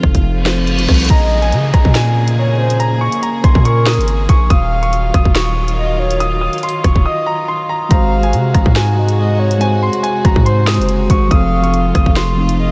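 A dark, tense half-time drill clip opens on hard-clipped kicks, a sharp snare and warm hats over a punchy, heavy 808 bass, with mellow electric piano and intimate sul tasto chamber strings beneath a background reverse cymbal and downlifter, before a smooth, vintage grand piano melody and a breathy, flute-like synth lead with chorus and delay enter at 1.1 seconds and carry the line through a brief break at 7.1 seconds.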